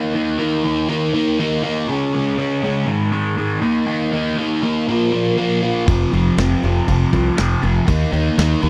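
A crunchy, overdriven electric guitar opens this short classic rock excerpt on its own, picking a double-tracked riff that sits up front with a phaser coloring its tone. The mood is driving and swaggering at 120 BPM in a straight 4/4, with the riff moving through power chords from Eb5 to Db5 and Ab5, back to Eb5, then on to Bb5 and F5 before settling back on Eb5. At 5.9 seconds a bright, direct fingered electric bass and a big acoustic rock drum kit join together, the kit bringing crash cymbal, a tight kick and a medium-tuned snare with a mid-forward, big-room character. The drums sit a little behind the guitar and bass in the balance. The whole thing has the dry, close feel of a 1970s-style studio recording in a small room, and it is cut off at 8.7 seconds as part of a longer piece.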